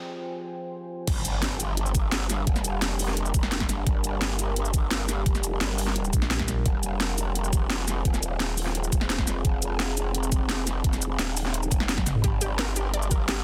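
A saturated, wobbling growl bass drives this aggressive, futuristic dark technical drum and bass cut at 172 BPM in G phrygian, crashing in at 1.1 s alongside an overdriven, knocking electronic kick, a background impact and an up-front kit of cracking snare and bright hats, while a deep, warbling ambient pad with vintage 12-bit grit sustains chords from the start, a thick FM bass growls briefly at 6.1 s, and a round, detuned analog pluck with digital delay arpeggiates near the end, all within a dense, heavily limited mix.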